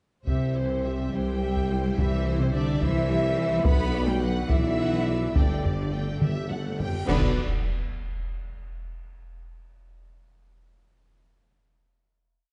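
Epic and relentless, this cinematic orchestral cue in 6/8 at 71 BPM in B phrygian sets lush bowed violin sections with vibrato, one rocking a two-note figure while the other doubles the tune at the octave, over background violas, close, focused cellos, distant double basses on the beats, a tight French horn section carrying the melody, a roomy tuba doubling the bass line and a heavy-stick taiko ostinato, with cymbal swells, crashes and bass drum strokes from 3.7 s, a drum fill at 6.2 s, and a huge reverse cymbal at 6.9 s swelling into a low impact on the final Bm chord at 7.1 s, set in a dark, warm production with moderate stage reverb.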